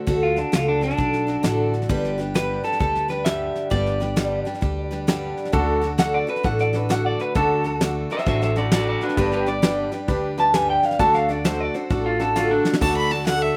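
A twangy, slightly broken-up electric guitar takes a clean lead solo from 0.0 seconds over a full-bodied acoustic dreadnought, its picked playing carrying finger squeak and slapback echo, in this heartfelt, nostalgic honky-tonk country piece swinging at 132 BPM in D major. A woody, thumpy pizzicato upright bass and a soft brush kit with a fat snare and tight kick keep the shuffle moving, while a warm baby grand piano with slapback echo joins at 5.5 seconds. After a brief drum fill, a nasal, earthy fiddle with light vibrato enters at 12.8 seconds, all captured dry and close as if played outdoors.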